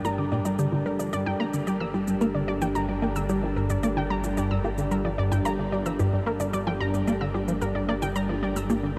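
A lush, detuned unison pad holds G minor chords over a nasal, pulse-width-modulated analog drone on G1, while a warbly, lo-fi pluck spins arpeggios through tape echo and shimmer reverb as a filter sweep moves across its sound. From 0.1 s a tight, driving sawtooth sequence drives the riff with chorus, phaser and echo, while dry, overdriven bongos and cabasa, present from the very start, sit low in the mix. This hypnotic, mysterious slice of ambient, sequencer-driven space music runs at 111 BPM in 4/4, steeped in a dark production and a huge reverb with a 6.9 s tail.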